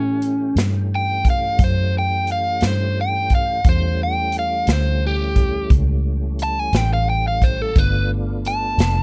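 Gritty and rollicking, this slow blues in 12/8 moves at 58 BPM with a straight feel, as a bright, crunchy overdriven guitar takes an up-front picked solo across the whole nine seconds, over an A7 chord that shifts to G9 at 7.8 seconds. Beneath it, a smooth tonewheel organ holds sustained chords with chorus vibrato, audible key click and a slow rotary speaker, while a round, foam-muted vintage electric bass anchors the low end. A natural country drum kit with a punchy kick, medium-tuned snare and hi-hat enters at 0.2 seconds, airy and polished in a studio room, and the production stays dark and dry, cut from a longer piece.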